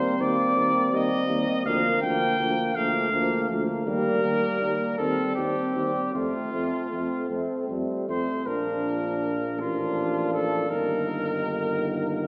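Heard from further back in a concert hall with a long, wet reverb, this stately, warm passage for brass quintet is cut from a longer piece and moves in an unhurried 6/8 with uneven beats and rubato. A clear trumpet with light vibrato carries the melody up front, while a mellow, smooth-topped flugelhorn plays a second line and a distant, roomy French horn and a trombone with vibrato fill in the accompaniment in the background. A tuba with a vintage tone enters at 0.2 s to supply the bass, and the music moves into a new section at 8.5 s.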